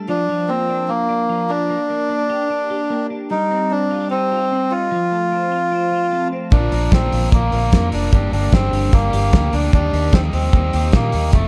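A straight 4/4 pulse at 149 BPM drives this bright, youthful slice of jangly indie pop in Bb major, cut from a longer piece. A compressed, twangy twelve-string electric guitar opens with clean picked arpeggios under analog chorus, and a reedy, breathy melodica carries the tune up front almost at once, moving through Bb, Gm, Cm and F. At 6.5 seconds the band arrives: a cloth-damped drum kit with a fat snare, tight kick and hi-hat sits close in a small room, its top rolled off, while a vintage muted fingered bass adds a round, punchy, foam-muted low end. A biting overdriven guitar enters at the same moment with picked accompaniment beneath the jangle as the chords turn from Bb to Gm and Eb. Light studio reverb and a dark, warm production give the sound a soft, intimate glow.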